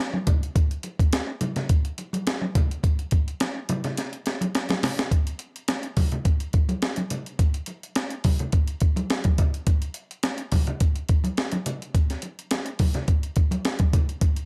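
Bright, damped congas with a thin-skinned, vintage, band-limited tone open this driving, cool funk excerpt at 105 BPM in a straight 4/4, joined almost at once by an up-front breakbeat sampler-style kit of hi-hat, thumpy kick and medium-tuned snare. The kit sounds compressed and gritty, as if re-recorded in a small room, and a drum fill from 4.0 to 5.1 seconds leads into a new section that carries on to the end. A digital ambience surrounds the groove.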